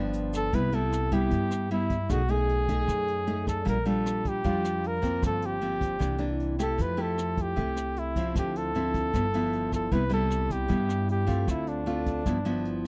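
A warm flugelhorn with light vibrato carries the jazz-style solo melody up front in this sunny, breezy bossa nova fragment at 154 BPM in C major, over fingerpicked classical nylon-string guitar, a woody, thumpy pizzicato upright bass and a brushed drum kit with a boomy kick, hi-hat and rim clicks, while a barky tine electric piano and a grainy egg shaker sound only briefly in the background until 0.5 s, set in a dry, close 1970s-style studio recording.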